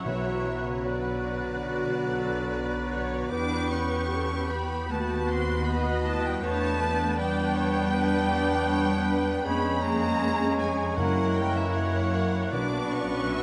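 Classical, slow romantic orchestral movement in B minor at 71-81 BPM with an elegiac, yearning rubato feel, where a warm, vibrato-rich violin section carries the melody over a background of clear oboe, dark clarinet, airy hollow flutes and a very quiet symphonic violin line, while lush violas, a present bassoon and mellow, distant French horns fill the accompaniment, clear cellos and dark double basses with expressive portamento anchor the bass, very quiet hard-mallet timpani mark 0.1 s and return at 11.0 s, and the whole orchestra sits in a vast, echoing cathedral reverb as the harmony moves from Bm through F#7 and back to Bm at 12.5 s.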